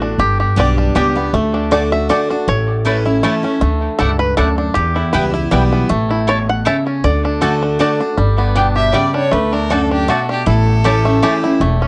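Joyful and virtuosic, this brief bluegrass excerpt moves at 158 BPM in a swung 3/4 in D major, cut from a longer piece. A twangy, percussive five-string banjo played with fingerpicks leads the melody up front from the start, carrying its solo through 8.2 seconds with a touch of tape echo. Beneath it, a bright, full-bodied dreadnought guitar with fresh strings picks the accompaniment, finger squeak audible, while a woody, thumpy pizzicato upright bass anchors the low end. A mellow mandolin adds stabs with its own tape echo. At 8.8 seconds a biting, earthy fiddle with light vibrato takes its solo from a distant position. The chords cycle through G, D, A, Dadd9 and Em under light reverb, and the whole recording carries the worn, warbling pitch drift of old cassette tape.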